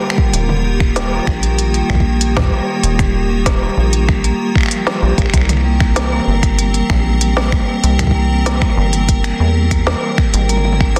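A straight 4/4 groove drives this cerebral, intricate IDM excerpt, built from a deep electronic kick and an organic electronic kit of finger snaps, crisp hats, toms and a woody, softly clipped snare that sounds re-recorded in a large room, all anchored by a rubbery, saturated acid bass with a resonant square-wave filter pluck sitting up front. Above it, an icy, crystalline glass pad holds sustained, detuned chords that pump with sidechain compression through chorus and its own reverb. A metallic, ringing vibraphone with fast motor vibrato spins arpeggios through tape echo as the harmony moves from Ebsus2 to C7 at 5.3 seconds and on to Absus2, all inside a dense, heavily limited modern master.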